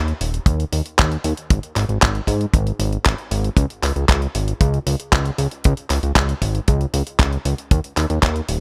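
A fat, detuned analog bass carries this bittersweet, danceable italo disco cut from the first second, blending sawtooth, square and triangle tones with ring modulation, a filter sweep and a fast attack that sustains into a mellow, thick low end. An overdriven, detuned 8-bit drum machine adds gritty sampler-style handclaps and hi-hat from 0.1 seconds, and a tight, dry acoustic kick joins at 0.5 seconds, pushing the straight 116 BPM 4/4 pulse. The parts sit up front in a close, nearly reverb-free mix.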